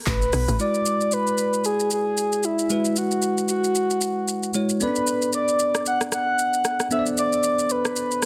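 Amapiano with a late-night, hypnotic mood, moving at 114 BPM in 4/4 with a 58% swing on the sixteenths. A breathy, flute-like synth lead carries the melody throughout, soft and sustained with vibrato, treated with chorus and digital delay. A tight, punchy log drum bass sounds only briefly from 0.1 to 0.6 s, its fast attack and decay giving a percussive thump. The deep house drum kit runs the whole way, with a deep kick, smooth hi-hats, handclaps, rim clicks and shaker sitting up front. From 0.6 s a bell-like tine electric piano adds clean, bright accompaniment, with harmony moving from B5 to E9 and then Bm7 at 4.8 s. Light reverb surrounds a dense, heavily limited modern master in this short cut from a longer piece.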